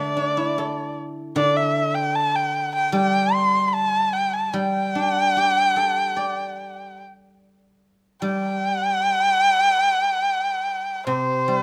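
A dark, nasal erhu carries the melody from the first moment, its soft-attacked bowed line full of vibrato and portamento, while a mellow guzheng, plucked with fingerpicks, rings out a silvery accompaniment beneath it. This short Chinese traditional chamber passage, cut from a longer piece, moves at a rubato 74 BPM in 4/4 in the G zhi mode, tuned to A4 = 436 Hz, with a festive yet pastoral mood. Both instruments sit up front in close, detailed sound with light reverb, the erhu boxy and expressive, and the music shifts into a new section at 7.8 seconds before the excerpt ends at 11.6 seconds.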